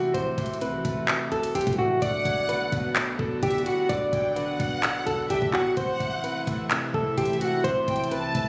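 Captured on a phone in a lightly reverberant room, this brooding, eerie half-time trap hip hop fragment at 128 BPM puts a full-bodied, fingerpicked plugged-in jumbo steel-string acoustic guitar melody up front with low-pass filtering and delay, over ringing Celtic harp accompaniment, a soft, breathy, detuned pad with chorus, a deep, boomy sine 808-style bass sitting dark in the background, and a knocking, bright-hatted trap drum kit of kick, hi-hat and handclaps, while a lush, vibrato-rich studio violin section with delay joins at 2.0 s over Am, Bm and back to Am.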